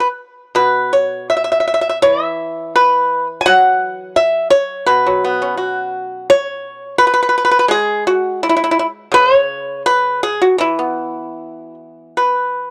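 Serene and pastoral, this short excerpt of Chinese traditional music features a solo pipa played with fingerpicks in a free, rubato feel. The instrument sits up front with a dry, percussive bite, ranging from its low register up into its upper register. A close, dry 1970s-style studio sound and small room ambience keep the performance intimate.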